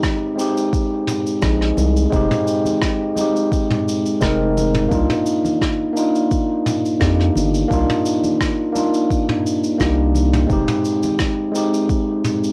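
Smooth and wistful, this short sunset chillout excerpt in a straight 4/4 sets a bright, gritty overdriven tine electric piano up front, carried through cassette tape, analog delay and plate reverb over Fm7 and Cm11 chords, alongside a soft, overdriven electronic kick, a brushed jazz kit with cabasa, rim click and toms, a round, deep analog bass entering at 1.4 s, and congas sitting in the background, all in a wet room with a homemade cassette character.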